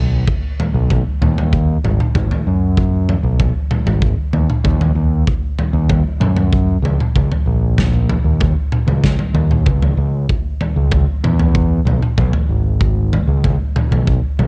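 Over a straight 4/4 pulse, a big, up-front rock kit of punchy kick, medium-tuned snare and toms, carrying a cassette-tape grit, joins at 0.3 seconds alongside a growling, bright fingered electric bass that is overdriven and sits up close in this carefree, jangly indie rock fragment cut from a longer piece, recorded dry at home on cassette.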